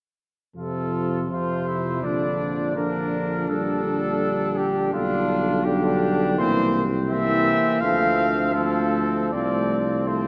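At 0.6 s a classical brass quintet begins together in a stately, triumphant F major passage at a rubato 82 BPM, with the warm, lightly vibrato-touched lead trumpet up front over a distant, clear second trumpet, a close-miked mellow French horn, a roomy trombone in the background and a vintage-toned bass trombone, as the harmony moves from F through Bb and G7/B to C7, Dm7 and a closing F/C, the ensemble set in a long, wet cathedral reverb.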